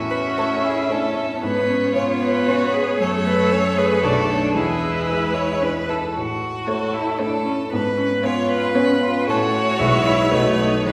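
A cheerful, graceful classical-period piano quintet movement at a quick 114 BPM in 3/4 and A major, where an up-front, clear violin carries the vibrato-laden melody over a rich second violin line with expressive portamento and a bright, focused but distant cello, while a smooth, even viola sits in the background and a warm, vintage-toned grand piano provides up-front accompaniment, all bathed in the wet reverb of a recital hall.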